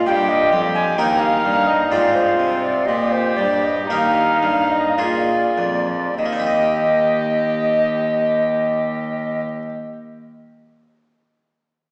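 Heard from further back in a wet concert hall with a 2.0-second reverb, the recording has a small-speaker sound and is cut from a longer baroque-style sonata movement with continuo. It is serene and dance-like, in 3/4 and Eb major, moving with rubato between 49 and 67 BPM and slowing down through its first 6.2 seconds. A mellow tenor recorder carries the melody up front from 0.1 s, its airy wooden tone marked by vibrato, a crisp attack and chiff. Beneath it a dark violin with a nasal gut-string tone bows the second line, up front yet distant, while a rich, reedy cello plays the bass in period style. A bright, mid-forward harpsichord in French style plucks the accompaniment on one set of strings and sounds alone at the close until 9.7 s, as the harmony moves from Eb through Fm7/Ab and Bb7 back to Eb.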